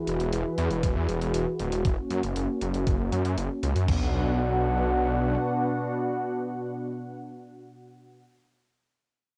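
This short synthwave clip has a homemade cassette-tape grain and a moderate digital room reverb that gives it a nocturnal, cinematic haze. A brassy, bold analog pad holds sustained sawtooth chords with a soft attack, chorus, vibrato and sidechain pumping, while a filter sweep and moving notch shape its tone through the opening 3.9 seconds. Underneath, a thick, lush detuned saw bass plays with a fast attack, chorus and tube saturation, sitting up front until 5.4 seconds. A sampler-style electronic hi-hat and a detuned 8-bit digital drum machine carry a tape-warm pulse, the drum machine adding a thumpy kick, toms and crash cymbal from 0.8 seconds. The harmony moves from Eadd9 to F# and settles on Bm, leaving the pad to sustain on its own to the close.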